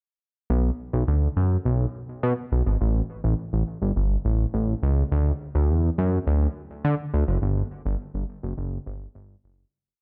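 Lightly reverberant and up front, this short early-eighties boogie funk piece in B minor at 104 BPM is a danceable, late-night breakdown for a fat, detuned sawtooth analog bass playing alone from 0.5 seconds, its filter-plucked, sustained tone carrying a syncopated boogie line with chromatic approach notes until a fade-out from 7.4 to 9.7 seconds.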